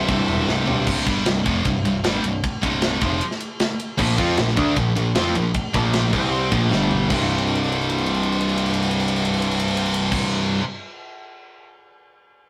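At a straight 154 BPM in 4/4, this powerful, anthemic hard rock excerpt opens with a brief background lead guitar note on tape echo as a scooped, high-gain distorted guitar and a hollow-bodied overdriven guitar drive riffs over C5, Bb5 and G5 power chords, backed by a growly, overdriven picked bass and a tight, mid-forward metal drum kit whose fills at 0.5 and 6.7 seconds lead into each section, with a longer fill running from 7.3 seconds, all captured with a rough rehearsal-room tube grit.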